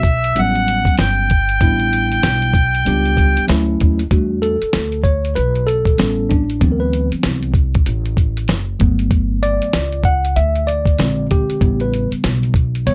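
Mellow and nocturnal, this jazz-hop cut from a longer hip hop piece moves at 96 BPM in 4/4 with a swung sixteenth-note feel, set in E dorian. A reedy, mid-forward accordion carries the melody up front for the opening moments, stopping at 3.5 seconds. A worn, slightly out-of-tune tine electric piano, clean and direct, supplies the accompaniment throughout and takes a solo from 4.1 seconds to the end. Underneath, a woody, dark pizzicato upright bass with steel strings holds the low end, while a gritty, compressed sampler-style drum kit with a thumpy kick, fat snare and hi-hat sits up front. The dry sound carries little reverb, and the harmony drifts through rich extended chords such as Em69, Dmaj9, Gmaj9 and a passing A#9 before settling on A9.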